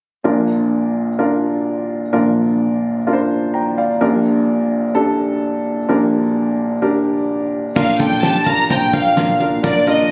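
Captured on a phone in the room and wrapped in moderate studio reverb, this hopeful, piano-driven pop excerpt opens with a woody upright piano playing chords alone, set up front with a lightly swung sixteenth-note feel. At 7.8 seconds a soft-attack violin section enters with the melody, bowed sul tasto for a pure, floating tone, joined by a growly pizzicato upright bass and a dry, dark 70s drum kit with a fat snare, tight kick and dark cymbals. The piece is cut from a longer work and ends at 10.1 seconds.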